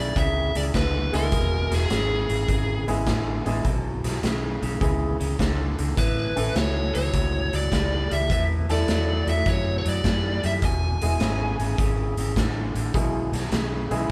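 Electric blues shuffle in E major at 103 BPM, swung in 4/4 with a gritty, soulful mood, cut from a longer piece. A biting, overdriven lead guitar carries the melody from the start until about 12.9 seconds, bright and picked, while a second electric guitar through a small old amp plays a slightly broken-up, lo-fi riff down low. The vintage fingered bass sits dark and round, foam-muted and amped, and a raw garage drum kit of hi-hat, boomy kick and medium-tuned snare sounds saturated and up front, pumping in a bright stone room with a rolled-off top. A clear, woody upright piano joins at 1.1 seconds with open accompaniment. The harmony moves from E to A at 6.0 seconds and back to E at 10.6, with the band heard playing live together in one room under a moderate large studio reverb.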